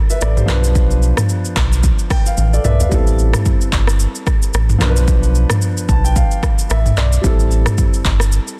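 An up-front, electronic afro-pop drum kit drives this smooth, hypnotic afrobeats cut, its deep kick and metallic hi-hats joined by handclaps, rim clicks, shaker and toms in a swung sixteenth-note feel, with a short drum fill at 2.4 seconds. Beneath it, a sub bass doubled at the octave holds down the low end with a full, sine-like tone, fast attack and long sustain. A grand piano supplies accompaniment from the outset, its intimate, boxy sound carrying audible action noise, and it steps forward with fills at 1.8 and 5.6 seconds. The harmony circles between Bdim and Am7, giving the passage a looping, trance-like quality. The mix is dry and dense, with a heavily limited modern master, and the brief section is cut from a longer piece.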